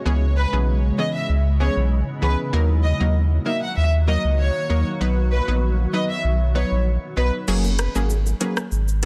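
Dancehall at 97 BPM, tough and bouncy, cut from a longer piece: a cloudy granular pad holds sustained chords with built-in reverb while a round, warbling analog pluck with chorus and a thick, saturated sub bass carry the harmony, a lush, smooth violin section sings the melody through delay, and at 7.5 seconds the pad drops out as an overdriven island pop drum kit with metallic hats and 12-bit sampler grit arrives, joined by tight, high-tuned bongos in the background, all in a dense, heavily limited modern master.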